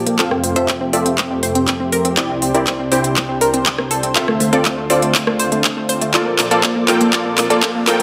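A lush, airy unison pad with chorus and punchy detuned supersaw stabs, swept through a low-pass filter and thrown into dub echo and cassette-tape grit, open this euphoric, expansive progressive house build-up in F major at 121 BPM, quickly joined by a round, nasal analog pluck arpeggio with phaser, a crisp, up-front pop drum kit of handclaps, hi-hat and rim click playing a fill, a barely audible knocking kick, and a faint riser at 7.7 s, while the pad, stabs and pluck pump to the sidechain over Fmaj7, Cadd9, Dm7 and Bbmaj7.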